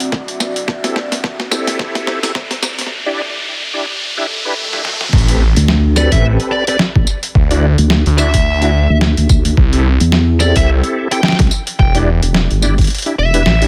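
Gritty and playful, this glitch hop excerpt moves at 108 BPM in 4/4 with a swung sixteenth-note feel, sitting in A dorian. It opens with a build-up where a deep, moody ambient pad warbles under chorus and reverb until 2.9 seconds, while electronic risers and swells climb, drum fills roll across a pitched-down, overdriven boom bap kit with crash, hi-hat, medium-tuned snare and tambourine, and a thumpy, compressed kick pushes forward. A bright, reedy tonewheel organ enters at 0.8 seconds with key click, slow rotary speaker, chorus vibrato and tape echo, its stabs pumping against the kick as a filter sweeps across it through the build. The drop lands at 5.1 seconds with an electronic impact, bringing in a swirling, thick phased saw bass, joined at 5.6 seconds by a nasal, resonant vowel-sweep wobble bass, both up front. A dark, fuzz-drenched electric lead guitar picks out a high melody from 6.0 seconds, trailed by tape echo, as the harmony cycles through Am9, Dadd9, C6 and Em7 under a light reverb.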